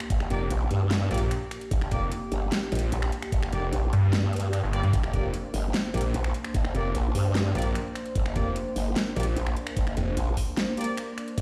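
Played through a big sound system in a bare stone room with light reverb and digital ambience, this heavy, menacing wobble dubstep excerpt runs at 149 BPM in a half-time 4/4 feel, sitting on G minor with tuning at A4 = 436 Hz. A growling, formant-filtered growl bass with chorus and overdrive and a snarling sawtooth bass with distortion and a moving notch sit up front, joined by a knocking, tape-warm electronic kick and a layered drum kit of finger snaps, metallic hi-hats and a huge snare. Behind them, a lush, warbling unison pad holds sustained chords with chorus and sidechain pumping, while a vintage brass ensemble with light vibrato adds stabs through a digital delay from 0.3 to 10.9 seconds.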